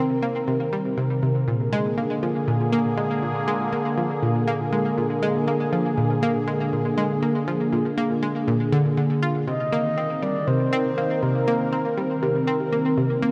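A straight 4/4 pulse anchors this hypnotic, expansive stretch of ambient, sequencer-driven space music, cut from a longer piece. An analog pluck carries the riff throughout, its round, wave-folded tone sitting up front with a fast attack, chorus and tape echo. Alongside it, a sweeping resonant pad holds sustained chords with a vintage, evolving character, a slow filter swell and chorus. The harmony settles on Cm7, shifts to Bb7 at 1.5 seconds, and returns to Cm7 at 9.5 seconds. At that moment a breathy, flute-like synth lead enters with a brief melody, softly voiced with vibrato, chorus and tape echo, before falling away at 12.0 seconds. A huge ambient reverb with a long tail bathes the whole mix in a spacious, drifting atmosphere.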